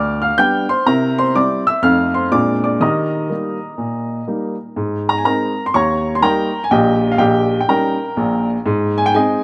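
A warm, open baby grand piano plays solo stride jazz up front at 123 BPM with a playful, exuberant swing, running through G7, C7, F7 and Bb9 to land in Eb major before shifting to Ab major at 4.8 s, all in light studio reverb with a rough home-demo feel on this short cut from a longer piece.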